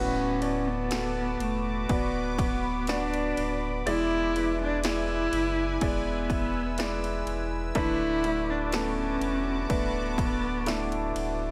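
Light reverb and a digital ambience frame this tender, emotional pop ballad excerpt at 62 BPM in D major, where a dark, woody bowed cello with vibrato carries the melody over an up-front concert grand piano with deep bass, a full sine-and-triangle sub bass with octave, a punchy, tape-warm analog drum machine of kick, snare and ride cymbal entering at 0.4 seconds, and a bright, detuned sawtooth pad with chorus and a filter swell sustaining evolving chords.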